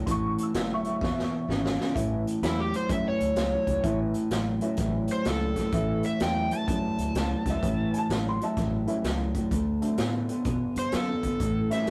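This excerpt from a longer electric blues shuffle rolls along at 127 BPM in 4/4 with a 65% swing on the eighths, carrying a swaggering, soulful mood in A mixolydian. A slightly broken-up electric guitar through a small old amp sits up front with a compressed, picked riff, while a jangly, detuned honky-tonk upright piano comps beneath it and a round, dark fingered electric bass holds the low end. A raw garage drum kit with a boomy kick, gritty saturation and a rolled-off top plays hi-hat, kick and snare, marking a drum fill from 1.0 to 2.0 seconds as the harmony moves from A to E and then settles on A7. At 2.4 seconds a bright, overdriven slide guitar played with fingerpicks takes the melody up front, and the chords shift to D7 at 9.5 seconds. Briefly, from 7.5 seconds, a clear, woody upright piano adds a second line with audible action noise, all within a rough rehearsal-room sound with a small-room reverb and a saturated glow.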